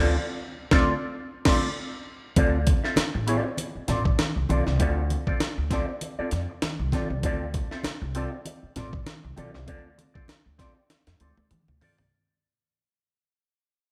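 A gritty, compressed breakbeat sampler-style drum kit sits up front in this hypnotic funk excerpt at 98 BPM in D minor. Pitched up, with a thumpy kick, high-tuned snare, crash, hi-hat and toms, it closes on a fill from 10.9 s. A dark, clean hollow-body jazz guitar with wah plays the accompaniment on a Dm7, alongside a woody, pizzicato upright bass on gut strings, while bright, low-tuned congas join in the background at 2.7 s. After an opening band accent, the sixteenth-note swung groove, bathed in moderate concert hall reverb, fades out from 2.4 s.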